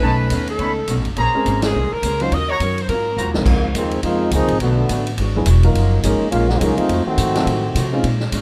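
A bright, tight saxophone section carries the melody over warm trumpet stabs, a warm baby grand with audible action noise, a dark, clean hollow-body electric guitar in the background, a woody, growly upright bass and a swinging big-band drum kit with a boomy kick in this dramatic, swinging big band excerpt at 209 BPM in Bb minor, where after a band accent at 1.6 seconds and a drum fill the music shifts to Db major and a clear, up-front trombone section takes a solo from 3.5 seconds, all closely and dryly recorded.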